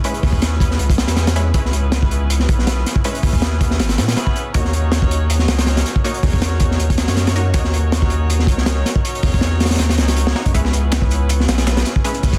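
Frenetic and dark, this drum and bass excerpt runs at 160 BPM in C# dorian with a swung jungle feel, driven up front by a crunchy, saturated breakbeat kit with a punchy kick and rolled-off top, alongside a deep, thick sub bass. A rich chamber string section sustains earthy bowed chords with light vibrato and vintage 12-bit sampler grit over C#m7 and D#m7, while a bold, detuned orchestra-hit-style synth stab with dub echo sits in the background and pauses between 7.7 and 10.4 seconds. At 10.5 seconds a dusty, compressed soul sampler kit with filtered hats, shaker and snare joins faintly behind the dense, heavily limited mix.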